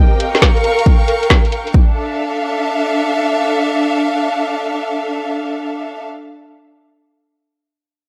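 A swung two-step garage groove drives this soulful, moody cut from a longer piece. A punchy, overdriven analog kick and a layered kit of woody snare and filtered metallic hats sit up front, both dropping out by 1.9 seconds. Lush, expressive symphonic strings with vibrato carry the texture throughout, moving from Bbmadd9 to Dmadd9 at 1.7 seconds, while a soft, floating sul tasto violin section sustains a high G5 in the background for the opening 1.8 seconds; both string parts pump against the sidechain, and the dry, gritty hardware sound has a touch of small-room ambience.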